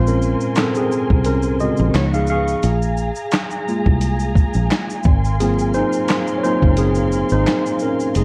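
Sixteenth notes swing lazily in four, and the sampler-style drum kit enters at 0.1 seconds with a thumpy kick, a medium-tuned snare, handclaps, hi-hat and shaker, all compressed and gritty with a 12-bit crunch and re-recorded in a large room yet kept up front. This hazy, melancholic lo-fi hip hop passage, cut from a longer piece, is tuned a touch below standard pitch and sits under a bed of vinyl crackle and light reverb. A worn tine electric piano carries the lead as a solo from 0.0 to 8.2 seconds, slightly out of tune and lightly overdriven, heard through its built-in speakers with cassette-tape color and a low-pass filter softening its top. A fingered electric bass, direct and foam-muted with a warm tone, holds the low end close to the listener. Behind them a dark, woody studio string section sustains lush bowed chords with vibrato, distant and filtered, as the harmony moves through Bbm9, Db9, Fmadd11/Bb and Ab13.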